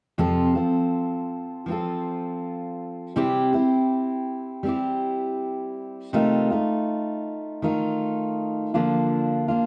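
A full-bodied jumbo steel-string acoustic guitar with fresh strings fingerpicks a heartfelt, easy-going pop accompaniment in F major at 81 BPM, moving through F, C, F7/C and Bb/D from 0.2 to 9.7 s in this short section cut from a longer piece, its up-front tone set in a wet studio reverb heard from further back in the room.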